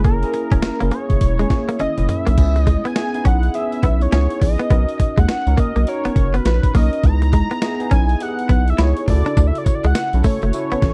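A punchy, bouncy new jack swing groove is built on a gritty, sampler-style drum kit with a thumpy kick and a high-tuned snare, alongside a round, deep analog bass sitting up front, a bell-like tine electric piano treated with phaser, and a twangy, picked clean electric guitar riff bathed in lush chorus. At 0.1 seconds a thick, detuned unison lead takes the melody, its sawtooth and wave-folded tone carrying vibrato and a touch of ring modulation while staying mellow. The swung sixteenths give the R&B beat its bounce, with crash, hi-hat, tambourine and toms colouring the compressed kit. Around 1.5 seconds the electric piano plays a fill, and a drum fill follows at 1.8 seconds, leading into a new section at 2.4 seconds that moves from C#m7 through Bmaj7 and back before touching Dmaj7. The dry, close recording has a 1970s studio character lifted by digital ambience, and this cut from a longer piece breaks off at 10.9 seconds.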